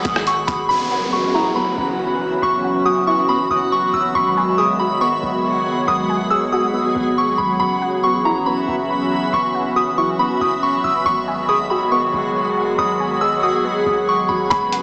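In a half-time 4/4 feel, a gritty, pitched-down sampler drum kit of thumpy kick, hi-hat and rim click sounds only in the first 0.6 seconds and returns at 14.5 seconds, framing this hazy, ethereal cloud-rap hip hop passage, cut from a longer piece, as a deep, boomy 808 bass sits in the background. Up front, a pure FM synth bell carries the melody with chorus and tape echo over a hollow, flute-like pad whose sustained chords warble with ensemble chorus and sidechain pumping, moving between G#m7 and F#7sus4. A dark, round pluck spins arpeggios beneath, a reversed, granular texture glows brightly until 14.5 seconds, and an electronic downlifter sweeps through early on, all set in a dreamy hall-reverb mix with a small-speaker character.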